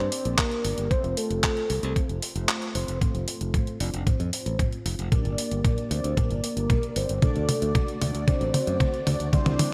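Nostalgic and danceable, this italo disco excerpt moves in a straight four-four pulse with a bright 1980s-style digital sheen and a lush hall reverb around it. A soft, octave-layered synth lead carries the melody, round and full-bodied with a sub-octave beneath it, coloured by chorus, phaser, cassette tape and digital delay, and from 3.0 seconds a filter sweep runs across it. Mellow synth brass adds stabs that sound detuned and evolving, its dark, brassy edge softened by chorus. Up front, a bright fingered electric bass sounds direct and growly, while a gritty, thumpy, compressed electronic kick drum drives the beat. A detuned 8-bit drum machine supplies tape-tinged handclaps, hi-hat and toms in a small room ambience. The kick drops out briefly before a drum fill takes over at 3.0 seconds, as the harmony moves through Gm, F and D.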